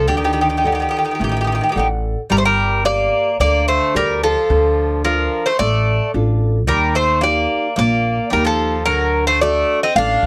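A steady, straight 4/4 pulse at 110 BPM carries this brooding, moody Greek folk piece in G minor, played by a small bouzouki band and cut from a longer performance. Up front, a picked bouzouki takes the melody between G4 and F5, its double strings giving a metallic ring with some octave-doubled courses, while a second bouzouki plays a lower supporting line from D3 to D4. A pizzicato upright bass, woody and growly with steel strings, sits prominently beneath them in the range of G1 to Eb2. A fingerpicked nylon-string guitar enters at 0.1 seconds with full-bodied, deep classical accompaniment and the brightness of fresh strings. The harmony moves from D to Gm at 2.3 seconds, then through Dm and Eb before returning to D, all set in a light reverb that keeps the small ensemble close and intimate.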